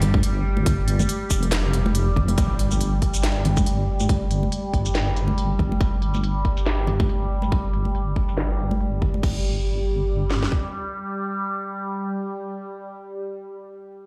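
Opening on a drop, this heavy, cavernous deep dubstep fragment moves at 140 BPM in a swung half-time feel, with a dark, detuned wobble bass up front beneath a resonant drone of sweeping overtones treated with chorus, phaser and built-in reverb. One electronic garage kit brings crash, handclaps, hi-hat, shaker and snare dulled by low-pass filtering; a second kit adds a kick and a cracking snare; and close, dry congas with hard hands sit in the background under dub echo. A very quiet electronic impact lands at 2.4 seconds as a filter sweep runs over the drums until 9.2 seconds, the drone lingers alone until 13.5 seconds, and the whole sounds played through a big sound system in a bare stone room.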